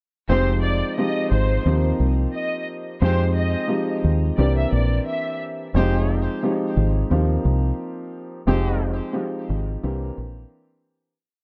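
A swung hip hop groove carries this short, reflective and moody piece, where a round, foam-muted dub bass loops up front beneath chopped, boxy piano chords with cassette-tape grit, lush bowed violins with vibrato play a short looping melody until 5.4 s, and punchy horn stabs in octaves drift through a dry, dark production that fades out from 8.5 s.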